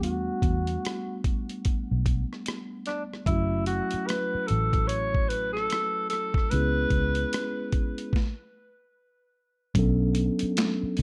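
A breathy tenor saxophone leads this smooth, soulful neo-soul and R&B fragment, cut from a longer piece, carrying an up-front, vintage-toned solo melody with light vibrato over a mellow tine electric piano, a round, foam-muted electric bass and a gritty boom bap sampler-style drum kit. The groove sits at a relaxed 74 BPM in 4/4 with a swung sixteenth feel, in B minor. Chords move from Em11 to F#m7 and C#m7, while a filter sweep runs through the whole first section. The drums are compressed and pitched down, with a thumpy kick, a high-tuned snare, hi-hat, rim click and handclaps placed up front, and the bass sounds dark and amped beneath the clean electric piano heard through its built-in speakers. The saxophone drops out at 7.7 seconds, a stop follows from 8.1 to 9.8 seconds, and the band then settles onto a Bm9 for the brief closing section. A moderate studio reverb and a dark, warm production tie the whole thing together.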